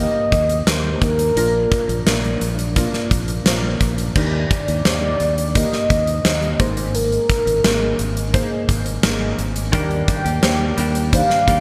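A mellow, horn-like synth lead carries the melody in this earnest, dramatic piano-driven pop piece, its round, soft-attack tone blending sawtooth and sine colours with wave-folding, a filter sweep, vibrato and chorus. Beneath it, a felt-muted upright piano gives intimate, hushed accompaniment with audible action noise and a touch of analog chorus. A bright, growly fingered electric bass holds the low end, and from 0.3 seconds a huge arena drum kit sits up front with a punchy kick, fat snare and bright cymbals in a hall-like space. The straight 4/4 groove moves at 86 BPM through Eb and Bb before shifting at 4.2 seconds to Ebmaj7 and Absus2. At 9.7 seconds, as the Ebmaj7 chord returns, a clean, compressed electric guitar recorded direct adds a picked riff with subtle chorus, all framed by light studio reverb and a bright 1980s-style digital production in this short cut from a longer piece.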